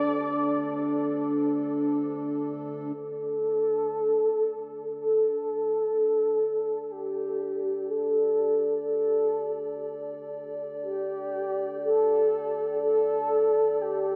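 Dark ambient drone at a slow 61 BPM in 4/4, this excerpt is cut from a longer piece and feels vast and ominous, tuned slightly low with A4 at 436 Hz. A mellow, horn-like synth lead carries the melody between G4 and D5 for the full 14.2 seconds. Its round sawtooth tone is shaped by a filter sweep, soft attack and vibrato, and colored with chorus, phaser and tape echo. Beneath it, a deep, moody analog pad holds sustained chords from D4 to D5, blending nasal square, sawtooth and triangle waves with detuned voices, a sub octave and chorus. The pad has a dark tone with a slow attack and long release, and it fades in from 3.0 seconds onward, with both parts sitting up front over a harmony that rests on D5, all steeped in a huge ambient reverb with an 8.7-second decay and the character of cassette tape.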